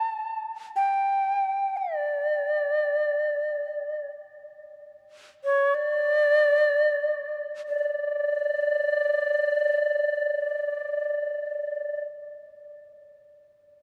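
Japanese traditional chamber music in free time, calm and austere, this brief passage cut from a longer piece features a solo bamboo shakuhachi: bright, airy and close-miked up front with vibrato and a crisp, chiffy attack, ranging from C#5 to A5 at a tuning of A4 = 441 Hz, slowing down from 3.6 to 7.7 seconds before moving into a new section, all set in a dark production within a cavernous cathedral reverb with a 5.2-second decay.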